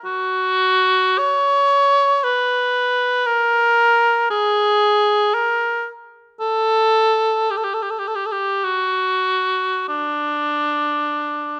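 Close, detailed microphones and moderate recital-hall reverb frame this brief, yearning and mournful classical fragment, in which an unaccompanied cor anglais sings up front with a warm, present tone and light vibrato between D4 and C#5, moving freely in a slow, rubato 3/4 at 46-60 BPM from 0.1 to 11.6 seconds.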